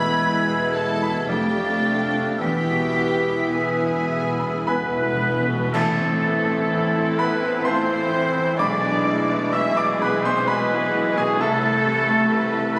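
Captured on a phone in the room, the sound carries a moderate scoring-stage reverb that gives this fragment of a longer romantic movement an open, resonant halo. In A minor and 3/4, it moves with a passionate, brooding rubato at roughly 51-66 BPM, starting on an E chord and settling onto A minor when the second phrase begins at 5.7 seconds. An up-front concert grand with a deep bass and a natural, clear tone carries the melody across a broad range, doubled by a shadowy, hushed violin section played sul tasto with light vibrato. Around them weave second lines from a solo oboe, a very quiet, mellow clarinet, an airy silver flute set in the background, and a second, more distant violin section. Underneath, a roomy bassoon and a very quiet viola section supply accompaniment, background French horns hold soft chords, and a woody double bass section joins a faint cello section on the bass. Hard-mallet timpani with calf heads play a fill from 2.4 seconds, cymbal swell, clash cymbals and bass drum add bright colour, and a tight, very quiet trombone section enters with sustained chords at the accent that opens the second phrase.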